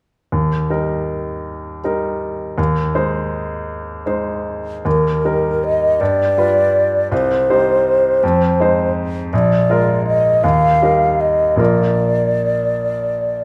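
Serene and lyrical, this romantic classical excerpt for flute and grand piano moves in a rubato 6/8 at 53 dotted-quarter beats per minute in E-flat major, with the brilliant, up-front piano and its audible action noise playing alone until the airy, hollow concert flute enters at 4.9 seconds with a soft-attacked, vibrato-laden melody over chords passing through G7, C minor and F minor 7 before settling back on E-flat, all set in a moderate recital hall reverb.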